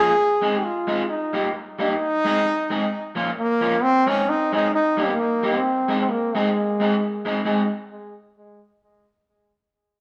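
Bouncy and cheerful, this ska fragment from a longer piece swings along in four with a bright, punchy solo trombone up front, carrying a smooth-topped pop-style melody with light vibrato and a touch of tape echo. Beside it, a picked electric guitar through a small old amp plays accompaniment, its warm, slightly broken-up tone bathed in spring reverb. The band sounds as if playing live in one room, wrapped in a wet studio reverb, and both parts stop by 7.7 seconds as a new section begins at 7.5 seconds.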